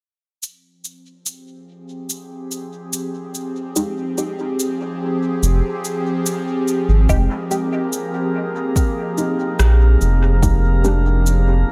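This hazy, deep ambient dub piece in F minor moves at a slow 72 BPM in straight 4/4, cut from a longer work. It opens at 0.4 seconds with tape-warm electronic cabasa and rim click trailing dub echo, as an airy, breathy pad fades in on sustained chords with chorus over an Fmadd9 harmony. A muted, detuned dub chord stab follows, run through phaser, analog chorus, cassette tape and dub echo. From 5.4 seconds a round, dark analog bass sits up front and anchors the low end. At 7.1 seconds the harmony shifts to Fm9 as a punchy, layered electronic kick arrives, joined by a drifting glass-harmonics texture with glassy overtones, chorus and its own reverb. Late in the passage a soft felt-muted upright piano plays mellow arpeggios in the background, with audible action noise, a low-pass filter sweep and tape echo, all inside a light digital ambience.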